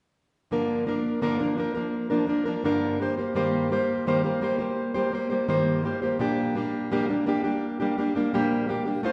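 A fingerpicked, plugged-in steel-string acoustic guitar with a full-bodied jumbo tone sits up front, carrying this sunny, carefree pop excerpt in Bb major at 84 BPM in a straight 4/4. Playing from 0.5 to 9.1 seconds, it moves through Gm7, Eb6/G and Bb6, ranging from G2 up to C5. A wet recital-hall reverb with a 1.4-second decay surrounds it, giving the feel of a church or concert hall.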